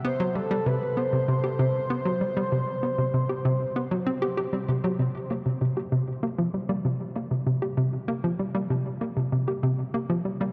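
A breathy, flute-like synth lead with tremolo, chorus and tape echo floats a soft melody over an up-front, bouncy square-wave pluck riff with its own chorus and echo, the lead ending at 4.4 s while the detuned pluck keeps cycling to 10.5 s in this cosmic, hypnotic piece of sequencer-driven ambient space music at 97 BPM, all bathed in a dreamy cathedral reverb.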